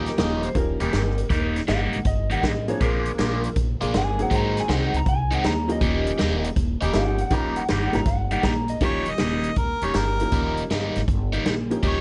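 A dark, slightly broken-up electric slide guitar takes the solo at the start of this rollicking, swaggering electric blues shuffle in Eb mixolydian, swinging at 160 BPM over Eb7, Bb7 and Ab7 chords, until a clear, up-front harmonica with light vibrato and overdrive takes the melody at 8.8 seconds. Underneath, a picked, overdriven electric guitar with phaser drives the riff up front, a woody pizzicato upright bass holds the low end, and a swinging big-band drum kit with a punchy kick and medium-tuned snare keeps the shuffle moving. A jangly, boxy tack piano and a warm saxophone section with jazz-style vibrato stabs sit in the background of this dry, dark-topped cut from a longer piece.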